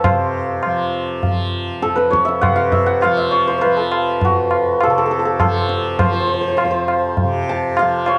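A moderate plate reverb lends space to this 8.2-second passage, cut from a longer piece, while the mellow, shimmering hammered santur sits up front and carries the melody in raga Puriya Dhanashri on F. Beneath it, a softly plucked, buzzing tanpura sustains a warm drone, and a low-tuned, ringing tabla with a small-room sound keeps a straight 5/4 at 101 BPM. The mood is serene and devotional Hindustani classical, with all three instruments playing throughout.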